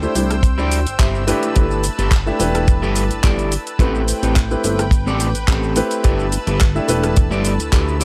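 This sunny, groovy nu-disco excerpt at 107 BPM in G major opens with a polished baby grand piano playing pumping accompaniment through analog delay, a lush, detuned unison pad holding bright chords above it, a dark, slightly broken-up electric guitar riff, a glossy synth bass up front, and an overdriven electronic pop kit of handclaps, hi-hat, rim click and shaker. A dry, tight acoustic kick joins at 0.4 s and sits most forward in the mix, anchoring a lightly swung 16th-note feel over chords that move from D9sus4 through G69 and Am9 back to G69. The drum kit sounds re-recorded in a small room, and that close ambience frames the whole groove.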